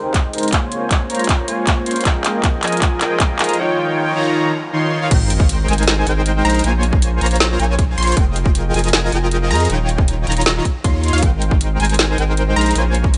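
Future bass at 157 BPM in a half-time feel, this lush, dreamy passage from a longer piece cycles through Abmaj7, Bbm9, Fm11 and Eb7. A mellow, detuned supersaw riff with a filter sweep and delay rides over a thick, saturated sine sub bass, both pumping to the sidechain, while an ethereal, chorused pad holds soft chords until 3.6 s. A hard-clipped electronic kick and a trap kit with woody snare, metallic hats, claps and crash sit up front with a tape-tinged small-room sheen; a drum fill runs through the first 3.6 s of the build-up, and a very quiet noise sweep and sub drop lead into the drop at 5.1 s, where a background unison pluck adds punchy, wave-folded arpeggios under light reverb and a gentle top end.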